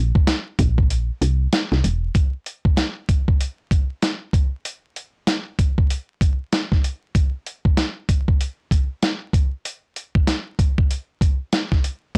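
A woody, round FM bass opens this boom-bap hip-hop excerpt at 96 BPM with a swung 16th-note feel, its soft, decaying tone carrying transformer saturation, and it drops out at 2.1 seconds, returning only briefly at 12.2 seconds. A dusty soul sampler-style drum kit enters at 0.2 seconds and carries the rest of the passage up front, with a thumpy kick, a medium-tuned snare and hi-hat sounding gritty and compressed after a break from 0.9 seconds. The reflective yet tough mood comes through a dry, blown-out, overdriven recording coated in vinyl crackle.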